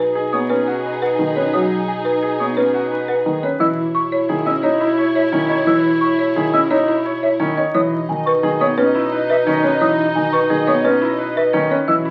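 A woody, rustic marimba melody opens this hypnotic, urgent minimalist pattern piece at 174 BPM in 6/4 over a punchy clarinet second line, lush bowed string chords and a mellow bass clarinet holding B2, with a brilliant grand piano joining in arpeggios at 0.2 seconds and, at 0.3 seconds, an up-front concert grand adding deep accompaniment beneath an airy, vibrato-laden flute, all cast in a large studio reverb and the crackle of a very old 78 rpm record as the harmony moves from B6 to Emaj7(no3)/B.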